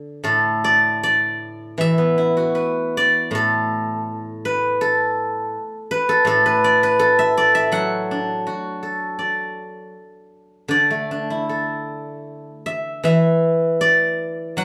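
Rubato phrasing in 4/4 drifts between roughly 74 and 84 BPM, giving this Chinese traditional solo for plucked strings a serene, flowing pulse. A single acoustic steel-string zither, played with fingerpicks, carries the entire clip in a D gong mode, ranging from A2 up to F#5 and tuned slightly below standard pitch at A4 = 439 Hz. Its tone is ringing and silvery, and it sits up front in the mix. The performance was captured live in one room, with a moderate, short studio ambience around the instrument. The music moves into a new section at 12.3 s before the clip, cut from a longer piece, ends at 14.6 s.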